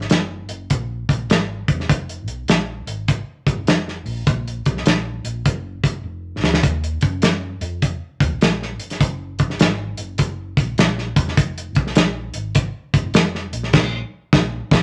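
A swung 4/4 groove at 101 BPM drives this uplifting, joyful slice of uptempo 1960s-style soul, cut from a longer piece, with an up-front acoustic drum kit of tight kick, medium-tuned snare, hi-hat and dark crash cymbals sitting in a small room with a rolled-off top. Underneath, a round, amped hollow-body short-scale bass played with the fingers stays dark and low, between E1 and F#2, well beneath the drums in the mix. A drum fill at 6.0 seconds leads into the second section, and a band accent at 13.7 seconds closes it, all in a moderate studio reverb.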